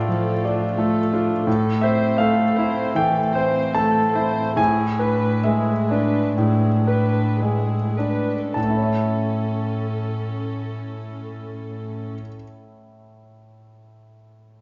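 Rubato and slowing through its first 8.6 seconds in a 4/4 pulse between 50 and 90 BPM, this tragic, brooding excerpt of a romantic classical movement sets a clear, up-front grand piano melody, its action noise audible and its notes ringing long, over a soft-edged sul tasto viola section and a dark, background cello section holding a low A, with the strings falling away at 12.1 seconds as harmonies move from Dm/A through Am and E7/A to A inside a recital hall's wet reverb.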